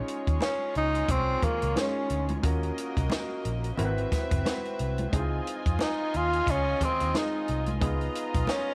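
A lightly swung 16th-note groove in four sets the pace for this short cut from a lush, 1970s-style soul piece, bittersweet and cinematic in mood. A compact cocktail drum kit sits up front, dry and natural, with a punchy kick, a high-tuned snare and hi-hat. A foam-muted, vintage picked electric bass enters at 0.3 seconds with a dark, round, amped tone, while congas played with soft hands ring in the background from 0.4 seconds. A breathy tenor saxophone carries the melody close and intimate, its whispered, jazz-style line full of vibrato, scooped notes and a smooth top. Beneath it a concert grand piano with deep bass provides accompaniment, and a distant studio string section adds a bowed second line with a reedy, gut-string, period-style colour and light vibrato. The harmony moves from a rootless Bbm11 through Ebm7 and Ab7alt to Dbmaj9, closing on Db9, all within a small room ambience and light reverb.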